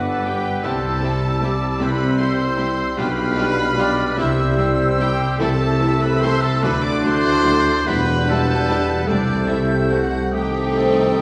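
Moving in a slow, rubato 6/8 at 50 dotted-quarter beats per minute with uneven beats, this lyrical, tender classical fragment is cut from a longer piece and unfolds over a harmony that drifts from G through C, G7/B, Am/C, D7 and Em7 before settling on Am7b5/C. A lush violin section carries the melody high in its range with smooth, even vibrato, while a pure flute section floats a second line above it and a clear oboe sits in the background with another. A very quiet violin section with soft, expressive attacks adds a lower second line from 0.3 seconds, and a very quiet viola section joins the accompaniment from 0.2 seconds alongside a background bassoon. A mellow French horn section and a tight, very quiet trombone section hold sustained chords, and a distant, roomy solo trumpet punctuates with clear stabs. The bass rests on a focused double bass section, a background cello section and a soft-attacked tuba, all set in a wet scoring-stage reverb that places the ensemble further back in the room with a softened top end.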